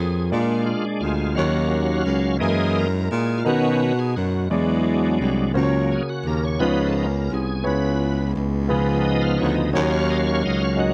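Slow gospel in a straight 6/8, soulful and jubilant, this short passage is led throughout by a bright, shouting tonewheel organ playing sustained chords, lightly overdriven and colored by chorus vibrato and a slow rotary speaker. Up front beside it, a breathy, mellow baritone saxophone carries the bass line with a soft subtone attack and light vibrato, while a concert grand piano with deep, natural lows accompanies quietly in the background. The sound is dry and close, like a 1970s studio session, as rich seventh and extended chords pass through the 10.9 seconds.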